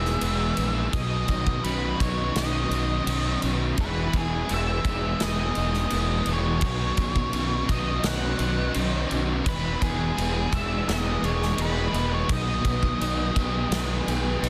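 A fuzzed, overdriven fingered electric bass sits up front in this wistful, hazy shoegaze and dream pop excerpt, its low notes anchoring a slow 84 BPM rock groove in E major that moves between Emaj7 and Badd9 before closing on B6. A big acoustic rock kit enters at 0.1 seconds, natural and roomy, with bright cymbals, a medium-tuned snare and a tight kick. Above it, a dark octave-fuzz lead guitar carries the melody through distortion and digital delay, while a twangy, slightly broken-up electric guitar through a small old amp picks arpeggios in the background, coloured by ensemble chorus and delay. Three overdriven rhythm guitars stack the riff: a hollow-body semi-hollow part washed in reverse reverb, a very quiet warm one, and a crunchy double-tracked one. An evolving, warbling wavetable pad hovers very quietly on sustained chords, its vintage triangle tone morphing with chorus, tremolo and built-in reverb, all wrapped in small room ambience and a dense, heavily limited modern master.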